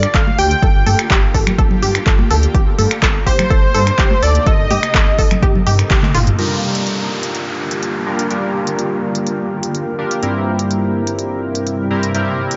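A lightly reverberant, digitally ambient mix with a rolled-off top end frames this dreamy, driving progressive house excerpt in G minor at 125 BPM, moving from Gm7 to Cm7/G and later C7/G. A punchy, up-front electronic kick and a deep house kit of finger snaps, handclaps, smooth hats and toms drive it along. Soft-handed congas and bongos, a rumbling, saturated detuned saw bass, a thick, bold unison lead with vibrato and dub echo, and a lush, filter-swept unison pluck with dub echo pump against the sidechain over a shimmering, phased ambient pad, until a drum fill and band accent at 5.9 s lead into the second half, where from 6.4 s a glossy, retro chorused polysynth plays filter-swept stabs with dub echo as an electronic downlifter sounds and the pad's filter sweeps.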